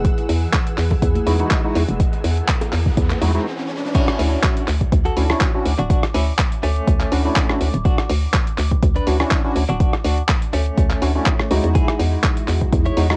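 Deep house at 123 BPM in D major, soulful and relaxed, where a hollow, bouncy FM bass pumps beside a deep, up-front electronic kick under a gritty sampler-style kit of claps, hi-hat, rim click and crash, with faint bongos and congas, a silky string machine, a bright analog string pad, a warbling, nostalgic tape-like pad and percussive organ stabs with tape echo, as a riser leads into a break and a drop at 3.9 seconds, where a twangy, clean direct-recorded electric guitar with tremolo takes the melody over Emaj9 and Dmaj9 chords, all heard through the dull, dry haze of a home cassette recording.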